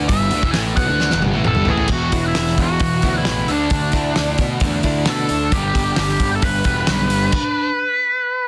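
A dark, up-front octave-fuzz lead guitar opens this restless, bittersweet quiet-loud alternative rock excerpt with a solo over E, as a drum fill runs from 1.0 to 1.9 seconds. Under it, a woody, boxy steel-string acoustic with old strings picks arpeggios in the background, alongside an overdriven semi-hollow guitar and a thick, distorted second guitar, both playing a riff. A growly, overdriven electric bass anchors the low end. The loose indie kit sits up front, with a fat snare, tight kick and rolled-off top, driving a straight 4/4 at 133 BPM. From 1.9 seconds the harmony moves through Eadd9, Dsus2 and G in a small room with a dense, heavily limited master, before a stop at 7.3 seconds, as the lead carries on to the end of the excerpt.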